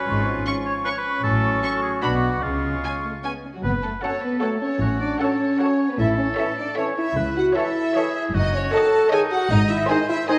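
A solo oboe, a clear, distant clarinet and a background bassoon open this quirky, sneaky and whimsical film cue in 3/4, joined almost at once by an airy flute group, a mellow, up-front French horn section holding sustained chords, and a close, rich double bass section with smooth cellos behind it, before a focused violin section takes the melody at 0.5 s over a woody, distant second violin line and even, background violas, the whole ensemble heard in a wet scoring-stage reverb.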